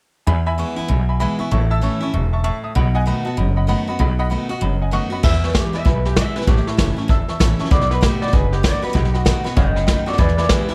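This rowdy, rollicking rockabilly fragment in E major opens at 0.3 seconds with an upright bass, a picked steel-string acoustic guitar and a clear upright piano, swinging at 194 BPM over an E, A and B7 progression. The pizzicato bass sits up front with a growly, thumpy, woody tone, while the dreadnought acoustic guitar adds a bright, full-bodied picked part and the piano rings high in its range with a natural, long sustain. At 5.2 seconds a twangy electric guitar through a small old amp takes the melody, its slightly broken-up tone colored by vibrato and tape echo. A vintage brush drum kit enters at the same moment, its dark cymbals, medium-tuned snare and punchy kick sitting close with a smooth, rolled-off top. Light reverb and a small room ambience hold the ensemble together, giving it a lively, close-knit feel as the progression cycles back to E.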